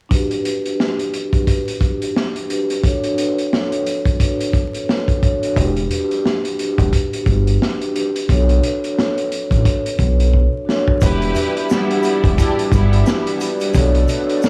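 A mellow, band-limited vibraphone played with soft mallets opens this tough, gritty boom-bap hip-hop excerpt in E minor at 88 BPM, its ringing tone filtered and tape-worn over a muffled, lo-fi vintage kit with a punchy kick and swung 16ths, while a dark, round dub bass enters at 5.6 seconds. After a drum fill, the second section at 11.0 seconds brings in clear, bowed symphonic string stabs with tape echo, a lush, detuned unison pad with chorus in the background, and a grainy tube shaker. Vinyl crackle and a dry, gritty hardware sound run through it all.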